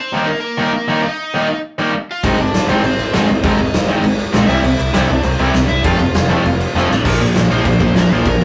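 A tight, up-front distorted guitar drives this upbeat, energetic punk rock cut at 200 BPM, joined by a second distorted guitar riffing in the background and a crunchy, overdriven lead guitar carrying the melody from the very start. At 2.2 seconds a dark, round fuzz bass and a big, punchy rock drum kit with bright cymbals crash in, moving through Eb, Ab, C and F before a drum fill at 6.8 seconds launches a new section on Bb5. The rough rehearsal-room sound carries a moderate reverb and saturated edge, and the clip is cut from a longer piece.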